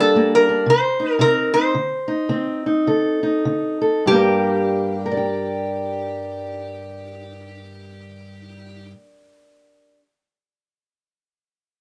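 Acoustic country blues in G minor with a mournful, smoky mood, swinging in 4/4 at 97-116 BPM and slowing over the first 4.1 seconds, as an up-front metal-body resonator slide guitar, bright, nasal and metallic with fingerpicks, carries the melody until 8.9 seconds over a dark, woody, boxy fingerpicked steel-string parlour guitar on old strings, moving through Gm, Cm and D5 before returning to Gm in a moderate studio reverb, cut from a longer piece.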